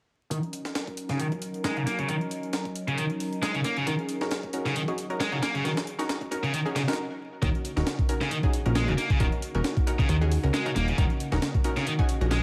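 A bright, high-gain distorted guitar riff drives this energetic, playful breakbeat excerpt at 135 BPM in swung 4/4 over Ebm7, backed by a gritty, compressed sampler-style kit with a thumpy kick and high-tuned snare, a dry overdriven electronic hi-hat in the background, and a swirling phased pad with sidechain pumping; a punchy, layered orchestra-hit-like synth stab joins at 3.9 seconds, and after a stop at 7.0 seconds a fat, detuned sawtooth bass with a filter sweep enters up front at 7.4 seconds, all under vinyl crackle and light digital ambience.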